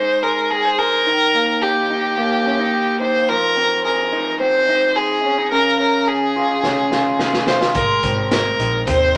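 Jangly indie pop in Ab major at 108 BPM, this short excerpt from a longer piece feels youthful and bright in a straight 4/4. A single bowed violin carries the melody up front, close and smooth with vibrato, while an electric guitar through a small old amp plays twangy, slightly broken-up arpeggios with a lo-fi edge. Beneath them the chords move from Abadd9 through Eb, Fm7 and Db before returning to Abadd9. The raw garage drum kit enters at 6.6 seconds with a fill of hi-hat, boomy kick and medium-tuned snare, sounding saturated and gritty with a rolled-off top and a pumping room. A vintage muted fingered electric bass joins at 7.8 seconds, dark, round and punchy. A wet small-room reverb ties the parts together in a compact space.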